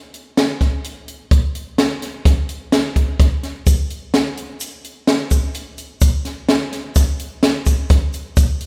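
A compact cocktail drum kit opens this intricate, driving progressive excerpt at 128 BPM in 5/4 with a straight feel, its dry, natural hi-hat, punchy kick and high-tuned snare sitting up front in light reverb, and a grainy, bright tube shaker, compressed and saturated, joins in the background at 3.7 seconds.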